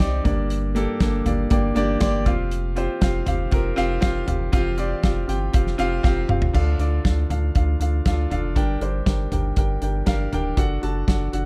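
Piano-driven pop in G minor at 119 BPM, this driving, dramatic passage is cut from a longer piece, with a polished, up-front baby grand carrying the accompaniment over a round, deep analog bass and an acoustic drum kit with a punchy kick, medium-tuned snare and dark cymbals. The piano adds a fill at 1.0 seconds as the harmony moves from Gm to Fsus2. A drum fill at 6.0 seconds leads into a new section at 6.5 seconds that passes through Dm, Gm and D/F#, all framed by light reverb and a small-room ambience in a warm production.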